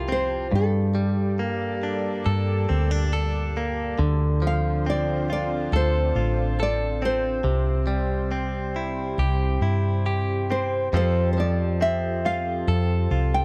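Intimate and heartfelt, this acoustic folk-pop ballad excerpt sets a full-bodied, fingerpicked nylon-string guitar melody over a bright, twangy clean electric guitar that is picked, compressed and recorded direct with spring reverb. A round, hollow-toned fretless electric bass sits up front, while a thick, detuned sawtooth pad with chorus holds sustained chords in the background across the whole 13.4 seconds. The chords move from Fmaj7 through Gmadd9, Dm7 and C to Fadd9 in a dry, close studio sound with a 1970s character.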